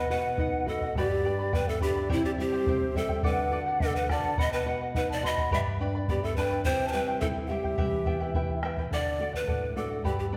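A straight 2/4 pulse carries this wistful, earthy Andean folk excerpt, with a round, band-limited bombo entering at 0.4 s beneath a fingerpicked charango with shimmering double strings and a thumb-plucked classical nylon-string guitar. Up front, close-miked cane pan pipes sing the expressive melody with breathy chiff and vibrato, while a mellow, hollow wooden quena sits distant behind them on a second line until 8.6 s. The ensemble rings through the wet reverb of a church or concert hall, and the music moves into a new section at 8.9 s.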